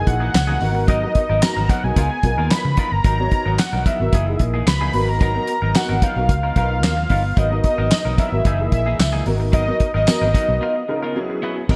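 A fat, nasal sawtooth lead sits up front, carrying the melody between D#5 and B5 with a detuned sub-octave body, ring-modulated edges, a filter sweep and vibrato on its sustained notes. This is early-eighties boogie funk in G# minor at 111 BPM, a funky, danceable excerpt cut from a longer piece, cycling through F#13, G#m9 and C#13 chords. Beneath it, a dry, damped 70s drum kit with a fat snare, tight kick, hi-hat, handclaps and crash cymbal sits up front through gated reverb, while a dark, round, foam-muted fingered bass punches out the low end. A grand piano with long sustain and ensemble chorus fills in the harmony, and a bright, twangy, compressed electric guitar picks a riff through lush chorus. A jingly, band-limited tambourine shimmers in the background from 0.3 to 10.2 seconds, and a break at 10.6 seconds closes on F#7sus4 within a bright 1980s-style digital production and a lush hall reverb.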